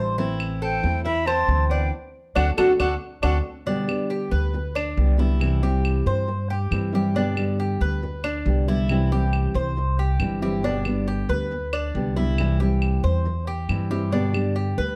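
This Latin excerpt is Cuban son in the guajira style, relaxed and warm, moving at 138 BPM in a straight 4/4 in G major. A fingerpicked nylon-string guitar with a full-bodied, deep classical tone and a picked Cuban tres playing arpeggios on metallic double strings sit up front throughout. Beneath them, a thumpy pizzicato upright bass with gut strings is also up front. Woody, compressed claves keep time from 0.4 seconds. At 0.6 seconds an airy silver concert flute carries a brief tongued melody with unsteady vibrato, while a clear, punchy tenor saxophone plays a smooth second line in the background; both fall away by 3.4 seconds, during a band accent over the D7 that follows the opening Am. The rest moves between G and C chords under light reverb in a dark production.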